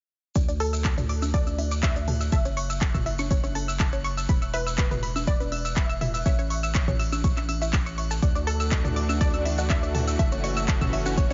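A tape-warm, deep electronic kick sits up front of this uplifting, expansive progressive house excerpt at 122 BPM in D major, joined by a thick, saturated sub bass and a round analog pluck spinning chorused, tape-echoed arpeggios, all moving through Dadd9, F#m7, Esus2 and A. A punchy, wave-folded unison pluck carries the melody from 0.6 s, while crisp hats and handclaps, grainy maracas heard as if in a distant large room, and background electronic toms, congas and bongos fill out the groove. A glassy texture of drifting overtones shimmers faintly in the background from 1.1 s, and a lush, detuned supersaw pad arrives at 8.4 s with pumping sustained chords, the whole mix dry and rounded off in the top end.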